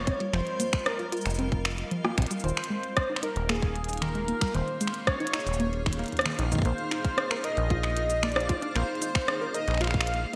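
An eerie, intricate IDM excerpt at 114 BPM opens with a velvety synth lead carrying vibrato, chorus and digital delay, a cloudy, evolving granular pad in the background, a rubbery, resonant acid bass up front and a very quiet reversed, dreamy texture, joined at 0.1 s by a warbling lo-fi pluck playing arpeggios through chorus and delay, a tight electronic kick and a glitchy kit of clicky hi-hats, finger snaps, rim clicks and shaker with gated reverb, over a progression of F9sus4, Eb9sus4 and Bb9sus4 in a lush hall with bright 1980s-style digital production.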